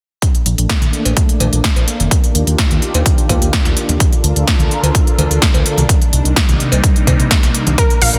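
Expansive and hopeful, this progressive house excerpt rides a steady, straight pulse. A lush, detuned supersaw pad holds sustained chords through a slow-attack filter sweep, moving from Bbmaj7 to Ebmaj7, then a rootless C9sus4 and Cm7, with phaser and sidechain pumping giving it a breathing shimmer. Up front, a punchy, tape-warm electronic kick and a big-room dance kit with a punchy snare and crisp, pumping hi-hats sound as though re-recorded in a large room. A fat, thick analog bass enters at 0.5 seconds with a moving notch and mellow sustain, while saturated congas and cowbell sit quietly in the background. Just at 7.8 seconds a bright, detuned unison pluck flashes in with a short arpeggio trailed by tape echo, all held together by light reverb and a dense, heavily limited modern master.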